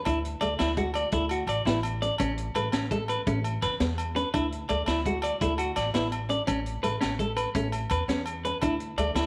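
Moving along in a lilting, straight 12/8 at 112 BPM, this joyful, carefree highlife guitar band excerpt in A major features a bright, twangy clean electric guitar playing picked arpeggios up front with slapback echo, a fingerpicked flamenco guitar with audible finger squeak comping beneath, a woody pizzicato upright bass, a vintage drum kit with a high-tuned snare and punchy kick, and ringing agogo bells, all circling between Dsus2 and Aadd9 in a small echo-chamber room.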